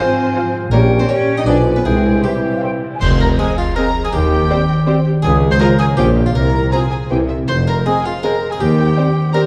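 A nasal, bright harpsichord carries the melody of this quirky, magical film cue in F minor at 162 BPM in 3/4, alongside a lush violin section, while a second, distant violin section, hollow flutes and a warm clarinet add a second line over a mellow bassoon, a very quiet viola section, soft-attack French horn chords and a ringing fingerpicked harp, with a cello section, clear tuba and double bass section holding the bass as a cymbal swell, clash cymbals and concert bass drum sound from 0.7 to 3.7 seconds, a band accent lands at 3.0 seconds, and a moderate scoring-stage reverb surrounds the dark, warm production of the short excerpt.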